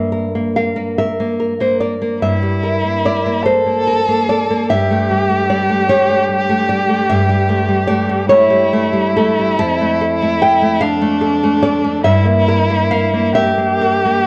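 A bright, full-bodied nylon-string guitar opens this solemn, elegiac romantic duo with fingerpicked classical accompaniment in a rubato 12/8, joined at 2.2 seconds by a rich, up-front bowed violin whose expressive melody glides with vibrato and portamento, all heard through a moderate recital-hall reverb and the worn, warbling pitch drift of old cassette tape in this fragment cut from a longer piece.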